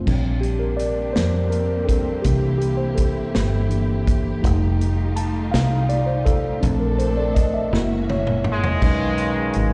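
Hopeful and soulful, this slow gospel excerpt in 6/8 sounds like a live gig heard through the venue's PA, with a recital-hall reverb and a softened top end. A mellow tine electric piano carries a solo from the start, its clean tone touched by plate reverb and slapback echo, while a punchy, bright fingered electric bass holds down the low end. A soul drum kit with dark cymbals, a tight kick and a medium-tuned snare sits in a roomy, distant space and plays a fill from 7.7 seconds. Beneath them, a bowed studio string section sustains expressive chords with vibrato and portamento, its smooth sound bathed in plate reverb. Rich extended chords move through the passage, and at 8.5 seconds a clear, tight horn section enters with the melody, adding light vibrato, slapback echo and plate reverb just as the clip is cut off.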